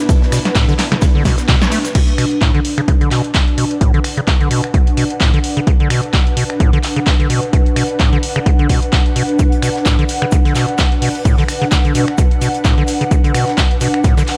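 Raw and playful, this acid house cut opens on a drop in which a very quiet, lush bowed string section with vibrato and portamento holds sustained chords until 1.9 seconds, with a band accent at 1.5 seconds. An ethereal, detuned pad with ensemble chorus and built-in reverb spreads a mellow, slow-attack texture across the whole piece, pumping with the sidechain. The square-wave acid bass carries the riff, squelchy and resonant with filter sweeps, overdriven to a saturated edge and trailed by analog delay. A tape-warm electronic kick sits up front, while a punchy analog drum machine adds snare, handclaps, finger snaps, hi-hat, ride and crash, with a short room on the snare, clap and hats. A dry, damped 70s kit with a fat snare, hi-hat and shaker stays in the background, dropping out after the opening and returning at 9.4 seconds, all set in light reverb and small room ambience.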